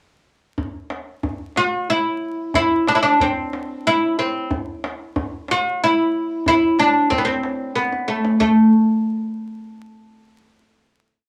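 Melancholic and soulful, this short, complete Persian modal piece moves at 92 BPM in a straight 3/4. The tombak enters at 0.6 seconds with a tight, acoustic low and high stroke pattern, set back in the mix with a live-room character. At 1.6 seconds the oud comes in up front, its plectrum-plucked double strings sounding bright and woody with a deep body, as it carries an ornamented modal melody between A3 and F#4-50c on the fretless neck. A drum fill at 7.8 seconds closes the single section, and the piece ends on a final note that rings from 8.4 to 10.3 seconds. A moderate small-room reverb and a layer of vinyl crackle give the recording an intimate, aged feel.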